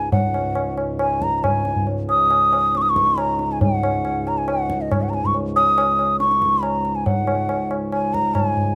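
Hindustani classical music in a devotional, serene mood, cut from a longer piece, where a hollow bamboo bansuri carries the melody up front with a pure tone, vibrato and tongued notes over a steadily quickening pulse. A reedy, breathing harmonium holds a full, dry drone low beneath it, while low-tuned, ringing tabla sits close in its own small-room ambience. Close, detailed microphones and light reverb keep the whole performance intimate.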